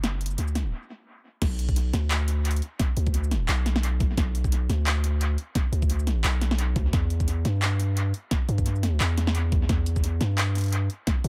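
Tense and spacious, this half-time drum and bass excerpt opens with a brief build-up that stops short before the drop at 1.4 seconds, where an overdriven, knocking electronic kick joins a deep, mellow 808-style bass and a layered kit of cracking snare, bright hats, handclaps, shaker and crash cymbal, its overdrive and dub echo filling a dry, echo-heavy mix.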